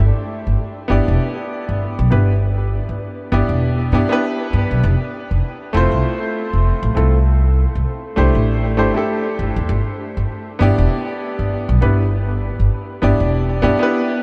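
A relaxed 99 BPM pulse in 4/4 with a gentle swing on the sixteenths sets up this blissful sunset chillout piece in G mixolydian, cut from a longer work. The upright bass opens at 0.0 seconds, plucked pizzicato with a woody, growly tone from its steel strings, sitting up front in its low register. At 0.9 seconds a clear concert grand piano joins as accompaniment, natural and up front, with deep bass and a short sustain, its notes trailed by a delay. The harmony drifts from G6 through Fmaj7 and C69 before returning to G6, giving the passage an easy, unhurried glow. The bass stops at 13.7 seconds while the piano carries on to 14.2 seconds. A huge ambient reverb with a long tail soaks the whole mix, lending it a dreamy, floating atmosphere.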